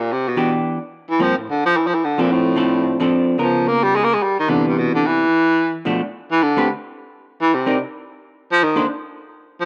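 Swung eighth notes in 4/4 drive this brisk, sophisticated jazz fragment, cut from a longer piece. A baritone saxophone carries the melody and solos from the very start, its soft attack and vibrato giving the low line a vintage, warm character as it sits up front. A clean, picked electric hollow-body guitar enters at 0.4 seconds to accompany it, also placed close and forward, and drops out at 8.9 seconds while the saxophone plays on alone to the end. The harmony moves through colorful chords such as Em7, F6, Db6, Cmaj9 and D13sus4, with two brief breaks where the chords fall away. Both instruments carry a cassette-tape tint, and the whole home recording has a dulled top end, moderate spring reverb and the ambience of a small room.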